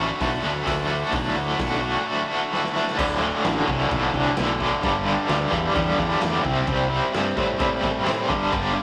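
A rough rehearsal-room sound with tube saturation and a moderate studio reverb gives this short garage rock excerpt a rowdy, swaggering edge. At 130 BPM in a straight 4/4 and set in D mixolydian, it is driven by a biting, bright guitar riff, double-tracked, up front and colored with tremolo, spanning from D2 to F#4. Beneath it, a growling picked electric bass, heard both direct and amped and pushed into overdrive, rumbles in the low register from D1 to A2. A raw acoustic drum kit joins at 0.2 seconds with a boomy kick, a medium-tuned snare, hi-hat, crash and dark cymbals, its pumping small-room character sounding gritty with a rolled-off top. The opening rests on D, and a drum fill from 2.5 to 3.0 seconds kicks the band into a new passage that moves through D5, G5 and C5 power chords before landing back on G5 as the clip cuts off.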